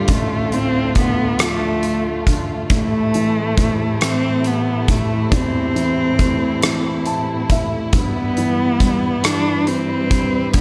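A rich, bowed solo cello sings the melody up front with expressive vibrato and portamento over a dark, woody upright piano, a lush, distant string section holding sustained chords, and a big-room arena drum kit with a punchy kick, hi-hat and rim click in this dramatic, melancholic six-eight pop ballad fragment, where the piano adds a fill from 6.6 to 7.9 seconds under light reverb.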